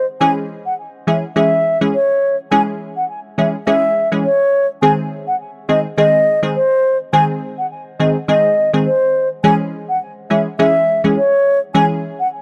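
A swung 4/4 dancehall groove at 104 BPM sets a bouncy, tough mood in C# harmonic minor, with a mellow, woody baroque flute carrying the tongued, vibrato-tinged melody through tape echo from the first moment while a crisp, detuned wavetable chord stab with a plucky filter and fast attack joins at 0.2 seconds, moving from C#m to G# and back by 9.4 seconds, all captured in a dry, gritty hardware recording cut from a longer piece.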